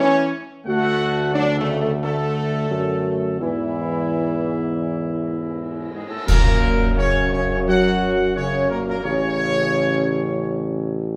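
A wet stone-room reverb surrounds this majestic, regal fragment of a classical ceremonial fanfare at 86 BPM, where a mellow, distant trumpet section carries the melody over sustained chords from a warm French horn section and a close-miked trombone section with light vibrato, a clear, vintage-toned tuba holds the bass up front from 0.7 seconds, and a cymbal swell, dark clash cymbals and concert bass drum, dry and close, join at 3.4 seconds ahead of a band accent at 6.3 seconds.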